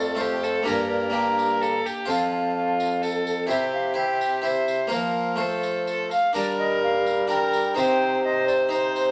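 A straight three-beat lilt drives this festive, courtly renaissance-style consort dance, heard as a short cut from a longer piece, with its opening phrase returning at 6.4 s. A pure, crisp wooden flute with vibrato carries the melody over a rich, reedy violin second line played up front with gut-string tone, while a bright, dry, close-miked harpsichord plucks the accompaniment and a dark, distant bassoon holds the bass; a jingly, compressed tambourine joins at 0.2 s. A stone room's reverb and a layer of vinyl crackle surround the consort as the harmony moves from F through Gm and C before turning to Cm at 7.8 s.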